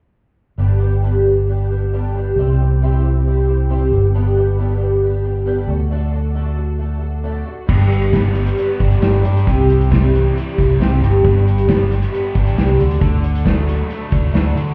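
The recording sounds muffled, as if heard through a wall, with light reverb and the echo of a stone room around it. This folk rock and heartland rock piece, cut from a longer work, has an open-road, nostalgic mood and a straight feel in 4/4, circling through G, C and D chords. From 0.6 seconds a boxy, shimmering, octave-doubled twelve-string acoustic guitar plays the picked accompaniment up front, beside a round, amped fingered electric bass that sits dark and forward. At 7.7 seconds the second section begins, bringing in a vintage drum kit with a punchy kick, medium-tuned snare, hi-hat and dusky crash cymbal, its small-room sound rolled off at the top. A bright, double-tracked overdriven guitar joins there too with a biting picked riff set lower in the mix, and all four parts carry on to the close at 14.7 seconds.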